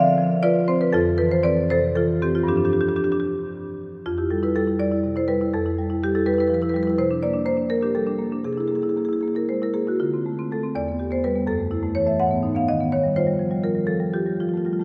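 A long, wet cathedral reverb surrounds a solo marimba played with medium hard mallets, its padauk bars sounding woody, dark and smooth from a close, up-front position. This contemporary classical piece, cut from a longer work, moves in a flowing, playful 6/8 at a rubato 74-85 BPM in F lydian, spanning E2 to Gb5 over 14.8 seconds. Colourful chords pass through suspended, added-ninth and augmented shades, and from 10.0 seconds a chain of minor sevenths leads to a closing Ebadd9.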